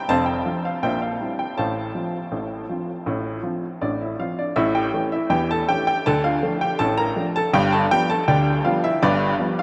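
Drenched in a huge, echoing reverb that places it in a vast space, this short cut from a longer ragtime piece features a solo upright piano with a clear, woody, up-front tone and short sustain, playing a jaunty, lively tune in F major at 81 BPM in straight 2/4, tuned to A4 = 438 Hz, with its opening section returning at 4.6 seconds and moving through chords such as C7/Bb, F/A, A7, Dm and G7.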